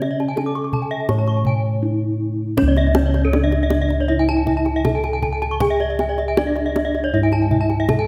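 Balinese gamelan in C# pelog at a hypnotic 79 BPM in 4/4, this shimmering excerpt sets a mellow bronze metallophone melody, struck with padded mallets, over dark, round bossed gongs placed up front in the bass, while a close-miked, full wooden-mallet metallophone and a bright horn-mallet metallophone entering at 0.2 s weave arpeggios, all three metallophones sounding the beating shimmer of paired tuning, with a tight, dry kendang played by soft hands, light reverb, and a shift into a new section at 2.6 s.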